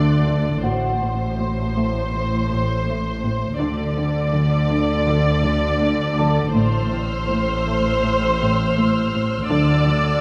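At 81 BPM in a straight 4/4, this tense, ominous suspense film cue in A dorian is a short excerpt cut from a longer piece. Muted violins carry the melody up front, lush and veiled with vibrato, while muted cellos play a close, dark riff in the background. Beneath them a muted double bass section and a softer symphonic cello section, smooth on top with light vibrato, hold down the bass line. A concert harp adds a ringing, fingerpicked texture far back in the mix, and a distant, soft-edged layer of high muted violins appears at the start and returns from 6.6 seconds. The harmony sways between D and A minor before settling on a D5 chord at 9.5 seconds, all set in a wet concert hall reverb with a long 2.5-second tail.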